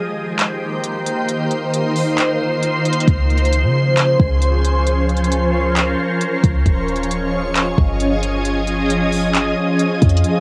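A shimmering ambient pad leads this melancholic, hazy cloud-rap excerpt, holding sustained chords up front with an ethereal, octave-up glow, detuned and granular, its sound coloured by chorus, phaser, built-in reverb, sidechain pumping and cassette-tape grain. A smooth R&B drum kit enters at 0.4 seconds in a half-time feel at 134 BPM, with a soft kick, handclaps and silky hi-hats carrying a tape-softened, produced character. The pad and drums hold the opening break alone until a clean 808-style bass arrives at 3.1 seconds, deep and boomy with a dark sine tone that strikes fast and then decays. The harmony drifts from Cm7 to Dbmaj7 and then to Eb9sus4, keeping the mood suspended and wistful. Light reverb and the lo-fi sheen of a home cassette recording wrap the whole cut in a dusky haze.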